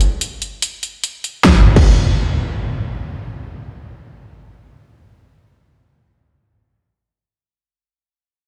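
This heavy, menacing excerpt of wobble dubstep opens on an up-front electronic drum kit of crash cymbal, bright hats and a huge snare, played with a swung, half-time feel. At 1.4 seconds a distorted, tape-warm electronic kick lands alongside an up-front electronic impact effect that rings on until 6.1 seconds, after the kit and kick stop at 1.9 seconds. The sound is that of a big system playing in a bare stone room, with light reverb.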